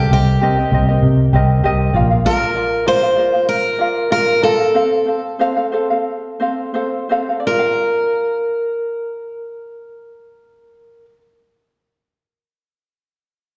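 A picked steel-string acoustic guitar carries the melody with audible finger squeak and an auditorium sheen, bathed in plate reverb and slapback echo like the light, thumb-plucked ukulele accompanying it, in this heartfelt, sunny pop excerpt in Bb major at 83-98 BPM with a gentle 16th-note swing, where a dark, round, foam-muted vintage electric bass sits up front only until 2.2 s, the tempo slows from there to 7.5 s as the chords move from Cm7 through Bb and F and back to Bb, and the live gig is heard through the venue's PA in recital hall reverb.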